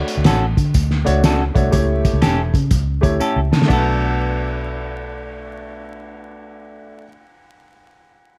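A dark, crackling vinyl sound with light reverb frames this passionate, urgent excerpt of uptempo 1960s-style soul at 122 BPM in B minor, swung in 4/4, where a muffled, gritty, cloth-damped drum kit with a fat snare and a round, foam-muted fingered bass sit up front, an intimate concert grand with audible action noise accompanies while a clean hollow-body electric guitar plays stabs over Dmaj7 and A7 chords, a jingly tambourine hovers in the background until 4.0 s, and a drum fill at 3.2 s leads into a Bm7 section at 3.7 s, after which the drums drop out.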